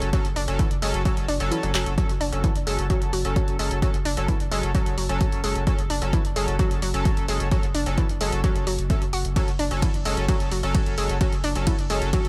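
A punchy, tape-toned electronic kick sits up front in this intense, relentless slice of driving peak-time techno at 130 BPM in F# minor, dropping out from 1.5 to 2.0 seconds around a drum fill at 1.7 seconds, while a thick, tube-saturated, low-pass filtered sub bass pumps on F#1, an analog drum machine adds handclaps with pumping hi-hat and ride, a round, nasal, wave-folded pluck riff carries 12-bit grit, chorus and delay, and an edgy oscillator-sync polysynth fires bright, pumping stabs through chorus and delay, the mix staying dry and close.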